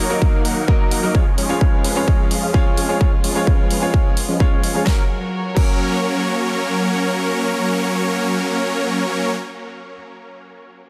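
Dense and heavily limited with a light reverb, this triumphant, anthemic fragment of festival progressive house opens on huge, lush detuned supersaw chords riding a filter sweep, with a bright, brilliant grand piano and a clear, biting string section in the background, all three pumping with sidechain. A punchy, up-front electronic kick and a big-room kit with a huge snare, metallic hats and crash drive the opening before the drums stop at 5.7 seconds. The chords move from D#m through C#/E# to F# at 4.9 seconds, where the piano, strings and supersaws carry on.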